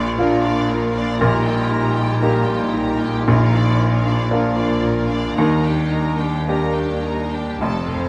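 A scoring-stage reverb gives this brief cut from a longer romantic movement for piano and orchestra a moderate, spacious bloom, with the clear baby grand placed up front and intimate enough that its action noise can be heard. The mood is passionate and lush, moving slowly at 51-60 BPM in 4/4 with a rubato feel, and the harmony settles on Bb, passes through Eb over Bb, returns to Bb and opens onto Ebmaj7 at 5.4 seconds. The piano carries the melody across a span reaching down to F1, while a violin section also carries melody high above in a focused, bowed sound with vibrato, and a second, more distant violin line sits just beneath it. Very quiet violas with a smooth, even tone supply accompaniment, mellow French horns hold sustained chords with light vibrato, and the bass is shared by very quiet cellos and lush double basses in the background. Timpani played with medium mallets on calf heads stay very quiet until a short fill at 7.6 seconds closes the passage.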